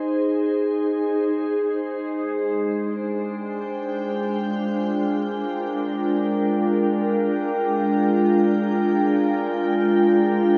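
Luminous and weightless, this ambient passage drifts in free time, tuned to A4 = 439 Hz, and is cut from a longer piece. A single glassy FM pad plays alone and up front from 0.0 to 10.6 seconds, its slow attack and long release giving mellow, ethereal sustained tones, thickened by ensemble chorus, built-in reverb and tape echo. The harmony moves from Ab to Gm7/Ab at 2.2 seconds, all bathed in a lush hall reverb that leaves the mix dreamy and soaked.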